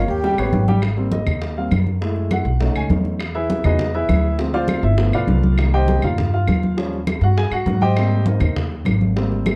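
Afro-Cuban jazz at a lively, sophisticated 201 BPM in 4/4, opening with a brief flash of ringing vibraphone and a breathy, hollow flute that stop by 0.6 s, before a drum fill from 0.2 s hands off to a grand piano solo at 0.8 s over chords moving from Abmaj9 through Gbm7, B7 and Emaj9 back to Abmaj9. The natural, up-front piano rides over a growly, woody pizzicato upright bass, with thick-skinned congas, tight high-tuned bongos heard at a distance and faint claves filling out the percussion. The production is dark with light reverb, and the passage is cut from a longer piece.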